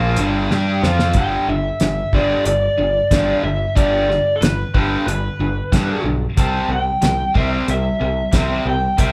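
Two picked, overdriven electric guitars, one biting and one raw and bright further back, open this confident, swaggering classic rock excerpt at 92 BPM in G major alongside a growling, punchy fingered bass. A thuddy, cloth-damped acoustic kit sits up front with a fat snare and tight kick, playing a fill from 0.5 to 1.2 seconds. At 1.2 seconds an up-front, lo-fi lead guitar through a small cranked amp takes the melody over G and then C, with the band heard live in one room inside a moderate large-studio reverb.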